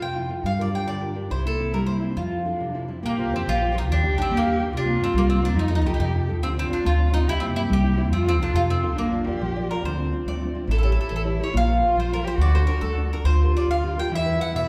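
Sunny and romantic, this Italian folk excerpt in 6/8 at 140 BPM moves from F major to Bb major at 3.0 s and D minor at 9.8 s, with a bright, picked double-string mandolin carrying the melody over a dark bowed cello second line full of vibrato and portamento, a fingerpicked nylon-string guitar accompaniment with audible finger squeak, and an up-front, woody pizzicato upright bass, heard from further back in a reverberant recital hall.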